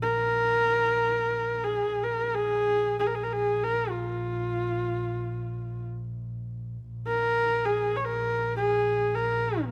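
From the first moment, a bowed horsehead fiddle and a bowed double bass sound together, the fiddle carrying the melody over a low, steady drone on Bb1. This is Mongolian folk music in free time, its mood vast and windswept, in a brief passage cut from a longer piece that runs about 9.7 seconds. The fiddle sits up front with a nasal, husky, boxy and focused tone, its horsehair strings coloured by vibrato and portamento as the line moves between Bb3 and Db5. Beneath it, the double bass is dark and woody with a smooth top and its own vibrato, held lower in the mix. Close, detailed microphones capture the playing, with light reverb around it.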